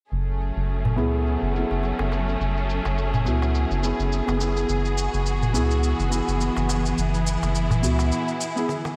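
A gently swung 4/4 groove at 105 BPM in F# minor drives this mystical, meditative organic downtempo excerpt, built from gritty, compressed electronic shaker and toms under a low-pass filter, with a dry, clay-shell darbuka set in the background. Up front, a lush, bowed symphonic string section holds vibrato-rich sustained chords over a round, deep analog bass, shifting from F#m7 to Eadd9/F# at 4.7 s. A muted, boxy felt upright piano with audible action noise, tape echo and slapback echo adds accompaniment under a filter sweep, the bass stops at 8.1 s for a short break before a drum fill at 8.7 s, and a moderate hall reverb lends a big arena sound.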